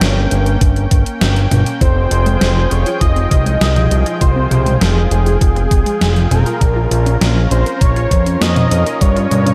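The fat analog bass is a thick, nasal blend of sawtooth and square waves that sits up front through this short cut from a longer synthwave piece at 100 BPM in straight 4/4. Beneath it, a lush unison pad holds sustained chords with a slow attack, its detuned sawtooth voices warbling through chorus, sidechain pumping and shimmer reverb, while a gated 80s digital drum machine supplies hi-hat, snare and toms, overdriven, with a gated reverb snare. An overdriven, thumpy electronic kick drum enters at 0.6 seconds. At 1.8 seconds the harmony moves from a rootless Eb/G to Fmadd9, and a bold unison lead arrives with vibrato and a sub octave, floating in diffuse ambient delay, alongside a warbly, dusty pluck playing lo-fi arpeggios in the background through analog delay. The chords settle on Bb minor at 6.6 seconds, and the dreamy, uplifting mix is soaked in plate reverb.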